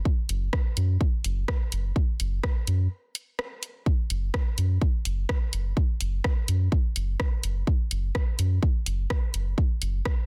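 Quirky and clinical, this minimal techno excerpt moves in 4/4 with a light 16th-note swing. A punchy, layered electronic kick sits up front from 0.1 seconds, joined at 0.3 seconds by a round, dark analog bass built from sawtooth and sine tones with a fast attack and sidechain pumping, plus a quieter house drum kit of hi-hat and rim click with soft clipping on the snare. A break arrives at 2.9 seconds, all set in digital ambience under a dense, heavily limited modern master.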